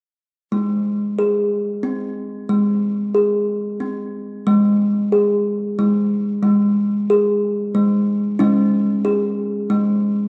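In an unhurried, straight 6/8 lilt, a lone kalimba plays a gentle, meditative world piece from 0.5 s to 10.3 s, its woody, hollow-box thumb plucks sitting up front with a cassette-tape grain and a wet spring reverb around them, moving from a G# chord into a chordless stretch at 4.5 s before reaching a C#5 chord at 8.4 s in this short cut from a longer piece.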